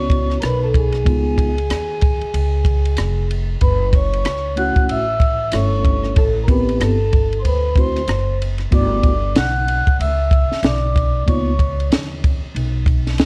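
Soft-mallet vibraphone carries the melody through analog delay as a breathy, distant flute floats above it, alongside a mellow tine electric piano and a woody, growly upright bass up front, with a dry cocktail drum kit of dark cymbals, high-tuned snare and punchy kick entering at 0.1 seconds in this smooth, swung jazz-hop excerpt with a cassette-tape sheen, the vibraphone and flute stopping at 11.9 seconds while bass and drums carry on to 13.3 seconds.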